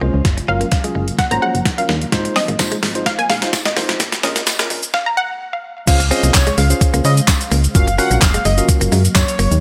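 A dry mix with a high-pass filter frames this carefree, euphoric dance-pop excerpt at 128 BPM in Db major: a build-up over Gbmaj7, Fm7/Ab and Bbm7 brings a drum fill and filter sweep, then a stop at 4.9 seconds before the drop lands on Dbmaj7 at 5.9 seconds. Up front, a crisp, overdriven 8-bit drum machine with thumpy kick, handclaps, shaker and crash drives the groove, while a punchy, round FM bass and a bright tine electric piano both pump with sidechain. Beneath them sit a glassy, ethereal FM pad, a twangy clean guitar riff under analog chorus in the background, and a jingly, very quiet tambourine from 2.6 seconds. A lush, detuned unison pluck with tape echo carries the opening melody, and in the drop an airy, dreamy lead with vibrato and chorus sings above.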